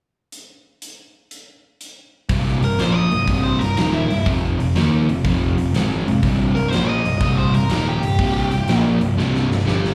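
A swung 4/4 shuffle opens this driving, raunchy cut from a longer blues rock and southern rock power-trio piece. A big acoustic rock kit plays alone from 0.3 seconds, its punchy kick, fat snare and hi-hat ringing in a bright stone room. At 2.3 seconds an up-front, double-tracked hollow-body guitar arrives with an overdriven, picked riff and slapback echo. Alongside it enters a growly electric bass, overdriven and amped, that moves through Cm7 and Fm7. Soon after, an octave-fuzz lead guitar adds a distorted, picked melody, also carrying slapback echo. A drum fill at 9.2 seconds closes the passage, and the whole band is heard as a live club gig through the venue's PA, with light reverb and small-room ambience.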